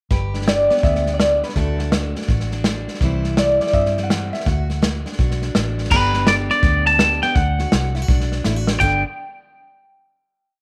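A sunny, heartfelt honky-tonk and classic country piece in swung 4/4 opens with a metallic, nasal lap resonator guitar solo played with a steel bar over a full-bodied, alternating-thumb acoustic guitar, a dark, foam-muted electric bass playing a two-beat root-and-fifth line with walk-ups, and a punchy train-beat drum kit, before a twangy, up-front electric guitar takes the melody at 5.9 seconds and a drum fill leads to the final chord, all in a small room with wet spring reverb.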